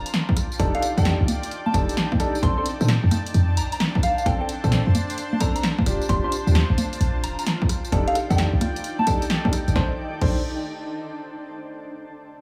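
A tight, tube-saturated 808-style bass and a blurred granular cloud pad with sidechain pumping open this bouncy, sunny two-step UK garage excerpt at 131 BPM in Bb major, joined at 0.1 s by a soft FM synth bell through chorus, phaser and dub echo and an overdriven analog drum machine of congas, crash cymbal, hi-hat, rim click, snare and tambourine, then by a punchy overdriven electronic kick, while a dark concert grand piano with audible action noise plays dub-echoed stabs over swung sixteenths and Ebmaj9, F13 and Bbmaj9 chords in a light small-room ambience.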